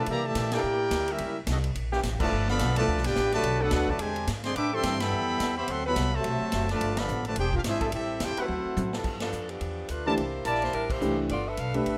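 Joyful and brassy, this fast big band swing excerpt at 214 BPM in G major opens with a clear trumpet section carrying the melody over a mellow trombone second line, background trombone chords, a woody pizzicato upright bass and a distant, roomy drum kit with a punchy kick and a drum fill just before the saxophone section takes the melody at 9.2 s, while at 10.1 s an intimate grand piano with audible action noise joins and a tight trumpet section adds brief stabs, all in a rough home demo mix with moderate studio reverb and a faint mains hum.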